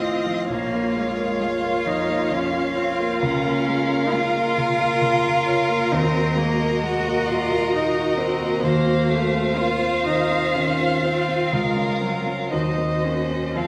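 From the first moment a piano quintet is already in full flow, with a grand piano up front laying down a mellow accompaniment beneath four bowed strings in an unhurried, rubato triple metre. A single violin carries the melancholic melody in a smooth, even line coloured with vibrato, sounding slightly distant. A second violin with a rich tone and a cello with a clear, intense voice and smooth top weave second lines around it. In the background a viola adds expressive accompaniment with vibrato and portamento. The harmony moves through elegiac minor chords, shaded by half-diminished and diminished colours. The whole ensemble sits in a reverberant recital hall, heard from further back in the room, and this short passage of about 13.7 seconds is cut from a longer slow movement.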